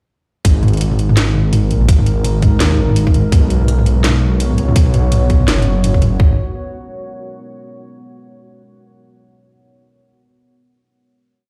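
A tight, up-front electronic kick drives this short, dark and spacious half-time drum and bass piece in G# minor at 167 BPM, joined from 0.4 seconds by a sparse swung beat of cracking snare, metallic hats and low tom. A deep, rumbling, saturated detuned saw bass holds long gliding notes, while a moody sub-octave pad with chorus and a slow attack enters at 1.4 seconds and pumps against the kick over G#5 and B5 chords. The drop gives way at 6.2 seconds to a final chord, all heard in a large, reverberant bare room.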